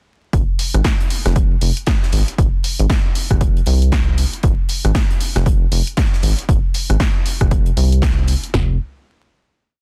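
Dense, heavily limited and dusted with vinyl crackle in a small room, this short, deep-feeling house piece opens straight into a drop at 0.3 seconds: a rubbery, hollow square-wave bass plays a syncopated riff with sidechain pumping, one punchy, tape-toned analog drum machine drives a four-on-the-floor kick with snare and floor tom, a second adds programmed hats, rim clicks and a backbeat snare, and a quieter gated 80s kit contributes an airy looped breakbeat of high-passed hats and fat snare, before a final note closes the piece at 9.8 seconds.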